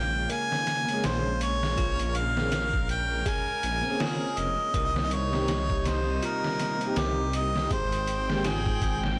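A smooth-topped harmonica with light vibrato carries the melody up front, roughened by 12-bit sampler grit and dub echo, in this brooding, melancholic trip hop excerpt with a swung feel. Beneath it, a deep, rumbling detuned saw bass sits forward while soft-attack, floating chamber strings hold sustained chords, and at 0.3 seconds a pitched-down, muffled sampler drum kit with a thumpy kick and overdrive arrives alongside a tinkling, slightly out-of-tune music box playing arpeggios through dub echo. From 0.8 seconds a felt-muted upright piano with audible action noise, tremolo and tape echo adds intimate accompaniment in the background, and the recording itself is blown-out and overdriven, with vinyl crackle and light reverb.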